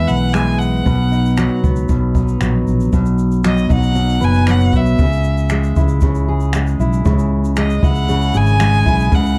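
Acoustic pop with a carefree, sunny mood, this excerpt features a bright, close violin melody with vibrato and an airy bow over full-bodied fingerpicked steel-string acoustic guitar, a round, up-front fretless electric bass, and a distant, roomy jazz brush kit with finger snaps, shaker and a boomy kick entering at 0.1 seconds, all moving from E to B to C#m in a dark production with light reverb.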